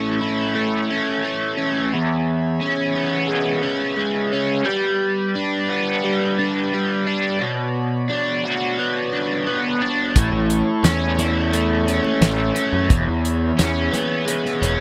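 Psychedelic rock at 87 BPM in a straight 4/4, this hypnotic, dark excerpt is cut from a longer piece and cycles through A, E6, G and Bmadd9. A double-tracked, overdriven electric guitar carries the riff up front through a rotary speaker, while a reedy tonewheel organ with audible key click holds sustained chords above it, lightly overdriven and turning through a slow rotary speaker. At 10.2 seconds the band drops in: a fuzz-soaked picked bass, direct and amped, pushes the low end forward, and a damped 70s drum kit sounds dry and mid-forward with a fat snare, tight kick and hi-hat. Very quiet, high-tuned congas with hard hands sit distant in a large room. A light reverb frames the mix.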